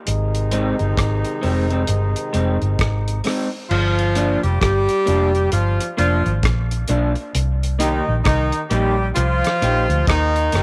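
A mellow horn section sits up front in this laid-back, uplifting roots reggae fragment, its punchy, octave-doubled lines carrying light vibrato and a trail of dub echo over a gentle swing. Beneath it, a round, foam-muted electric bass grounds the low end and a damped 70s drum kit keeps things dry and tight with dark cymbals, kick and rim clicks. A slightly broken-up, lo-fi guitar through a small old amp joins at 0.5 seconds with its own dub echo, and the harmony moves from Ab to Gm7 at 3.7 seconds and on to Cm7, all inside a light studio ambience.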